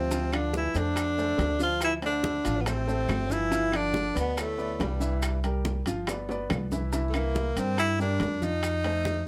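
Danceable, sophisticated Afro-Cuban jazz opens this short fragment with tenor saxophone, trombone, piano and upright bass entering together: the saxophone plays the melody up front with vibrato, a soft attack and scooped notes, over a pizzicato upright bass that sounds growly and sits close in the mix. Behind the saxophone, a cup-muted trombone adds a veiled, breathy second line in the background until 5.4 seconds. A vintage upright piano supplies intimate, short-sustained accompaniment, with its action noise audible. Bongos, congas, maracas, claves and timbales fill out the percussion: ringing metal-shell timbales, round low-tuned bongos, bright thin-skinned congas struck with hard hands, woody claves and grainy maracas. A drum fill at 6.1 seconds leads into a return of the opening section, and the harmony moves through jazzy chords such as Dm7, G13 and C9 inside a moderate club reverb.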